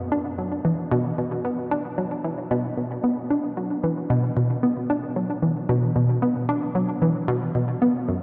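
Ambient music in B minor at 113 BPM in a straight 4/4, hypnotic and expansive in mood, taken from a longer piece. A single analog pluck carries the whole 8.2 seconds alone, ranging from F#2 to D4 and sitting up front in the mix. Its tone blends sawtooth and square waves, detuned and layered with noise, giving a warm, round sound with a fast attack and short decay shaped by the filter. Chorus and analog delay thicken and repeat the notes. The pluck rings out through a drenched cathedral reverb with a 5.7-second tail, placing it in a vast, echoing space.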